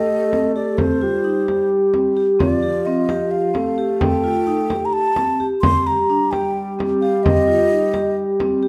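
Contemporary chamber music in 7/8 at 260 BPM in eighths, this pensive yet urgent fragment of a longer piece sits on a C minor chord, with a mellow, hollow baroque flute carrying the melody up front in an airy straight tone. Beneath it, a soft, round synth lead with a sub octave and chorus sustains a dark second line, while a metallic, ringing vibraphone with slow motor vibrato plays arpeggios. A deep frame drum played with soft hands enters at 0.3 s, and a moderate recital hall reverb frames the close, detailed sound.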